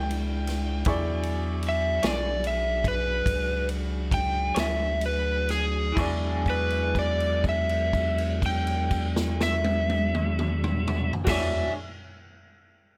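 Lightly reverberant and laid-back, this swaggering slow blues excerpt in 12/8 and E mixolydian moves at 41-54 BPM and slows down over its first 6 seconds, as a dark, overdriven slide guitar solos up front and then holds a note from 6.0 to 11.3 seconds over a round, deep analog bass, a big-room big-band drum kit with a punchy kick, a brilliant baby grand piano, a piping tonewheel organ through a slow rotary speaker, and a twangy, lo-fi electric guitar with tremolo that enters in the background at 2.0 seconds.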